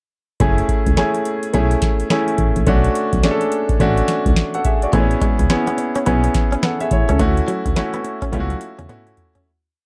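Syncopated, rootless chord stabs from a clear, up-front baby grand piano, dressed with grace notes and short fills, lead this slick, punchy new jack swing piece, set over a booming analog drum machine with a deep kick, tonal snare and metallic hats in a hard-swung beat. A round FM bass bounces through a swung synth-funk line with chromatic approach notes, and at 4.9 s a twangy, compressed clean electric guitar enters with a muted single-note riff bathed in lush chorus. The dark production carries light reverb, and the piece fades out from 7.2 s, with a drum fill at 8.3 s.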